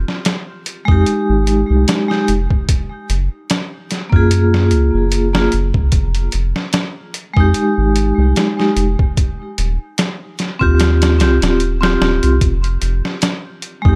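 Hypnotic and cinematic, this trip hop excerpt pairs a deep, round analog bass from the start with a gritty, pitched-down sampler-style drum kit of thumpy kick, medium-tuned snare and hi-hat, while a bright, metallic vibraphone enters at 0.9 seconds with tremolo, vintage 12-bit sampler grit and tape echo over a swung groove and Fm9, Gbmaj9 and Eb69 chords, all kept up front in a dry mix.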